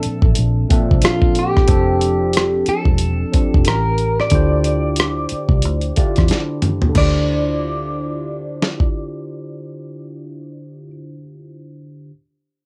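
R&B and neo-soul in D minor at 91 BPM with a swung sixteenth feel, this sultry, late-night excerpt pairs a slightly broken-up, picked guitar melody through a small old amp, carrying cassette grit and plate reverb, with a barky tine electric piano phasing through chords like Bbmaj9#11 and Dm11, an up-front, gritty sampler-style drum kit with a thumpy kick that drops out at 8.9 seconds after a fill at 6.3 seconds, and a dark, round, foam-muted fingered bass, all set in light reverb on a home cassette recording.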